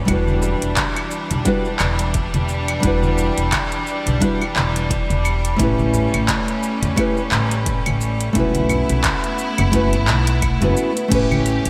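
Smooth and relaxed, this sunset chillout fragment in E dorian moves at 87 BPM in 4/4 with a gentle swing on the sixteenths, drifting from Em7 to A7 and a B7sus4 under a lush hall reverb and a bright 1980s-style digital sheen. A clear symphonic string section holds even, bowed chords with light vibrato from 0.0 s, joined almost at once by a full-bodied fingerpicked nylon-string guitar trailing digital delay and a woody, growly pizzicato upright bass. Underneath, a layered, overdriven deep house kit of claves, crash cymbal, handclaps, metallic hi-hat and shaker sits with a punchy electronic kick that drops out at 11.3 s, while very quiet, low-tuned congas played with soft hands add a thick-skinned pulse.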